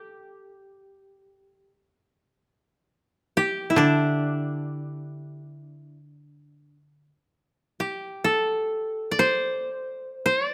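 Japanese traditional chamber music in free time, this brief excerpt cut from a longer piece carries a calm, austere mood in a D suspended pentatonic mode. A koto carries the melody throughout, ranging from D4 to D5, its fingerpicked tone dry, woody and placed up front. A second koto adds accompaniment on a low D3 from 3.8 to 7.1 seconds, sitting slightly beneath the melody. The same section is heard twice, with the repeat beginning at 7.0 seconds. Close, detailed microphones capture the plucked strings with a light touch of reverb, keeping the sound intimate and spare.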